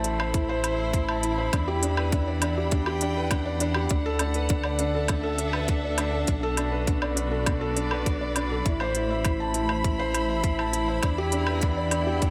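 Moving and hypnotic, this piano and strings electronica excerpt in E minor at 101 BPM sets a muted, intimate upright piano riff with audible action noise and tape echo up front over bowed chamber strings holding sustained chords with vibrato and sidechain pumping, a deep, rumbling detuned saw bass that also pumps, crisp electronic hi-hats and woodblock, and a tight, tape-warm kick entering at 0.3 seconds, all in light reverb as the chords move from Am through Em7, D6 and Bm7.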